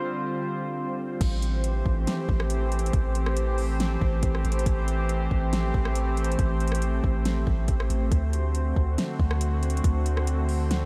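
A warbling, lo-fi pad opens this atmospheric cloud-rap excerpt, its detuned sawtooth and triangle tones swimming in chorus and their own reverb while sidechain pumping tugs at the sustained chords. For the first 1.2 seconds the pad holds a G7sus4 alone, a brief break that sets a nostalgic, melancholic tone. Then a deep, sine-like 808-style bass and an electronic, overdriven drum kit enter together as the harmony settles onto Am7, moving to D7 at 8.1 seconds. The half-time groove features a soft kick, a fat snare, metallic hi-hats, rim clicks and crash cymbal, sitting up front alongside the long, mellow, decaying bass notes. A huge ambient reverb soaks the whole mix, giving it a spacious, dreamy haze.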